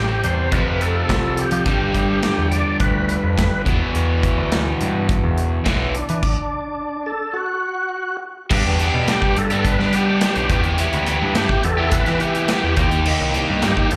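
A straight 105 BPM classic rock groove in 4/4 swaggers with confidence as a punchy, up-front acoustic drum kit joins at 0.2 seconds beside a growling, bright overdriven picked bass, a double-tracked overdriven guitar riff with slapback echo, and a thick, gritty tonewheel organ melody with key click, chorus vibrato and slow rotary speaker, all heard through a live club PA with moderate reverb, and the band halts for a stop from 6.2 to 8.5 seconds before the second section pushes on through G, Em and Eb in G mixolydian.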